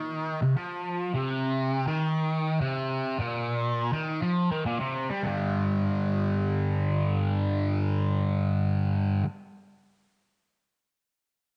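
Trippy and dark, this short rock cut in G minor, tuned to A4 = 445 Hz, moves at 205 BPM in a straight 7/8, with a lone bright, double-tracked fuzz guitar, picked, compressed and up front with distortion and phaser, playing from G2 to G3 over a Cm chord before shifting to G5 at 5.2 seconds, all set in a moderate spring reverb.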